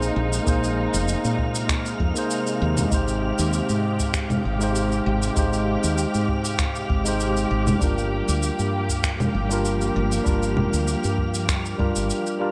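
A lightly swung sixteenth-note groove at 98 BPM in 4/4 carries this wistful sunset chillout excerpt, with gritty, sampler-style shaker, finger snaps and congas joined at 0.5 seconds by a deep electronic kick. A clean tine electric piano with digital delay and a round, woody fretless bass with lush chorus move through Bb9sus4, Abmaj7 and Gm7, while a veiled, con sordino string section holds dark sustained chords. An airy, breathy wind-like noise texture sits in the background, and the whole is framed by light reverb and digital ambience.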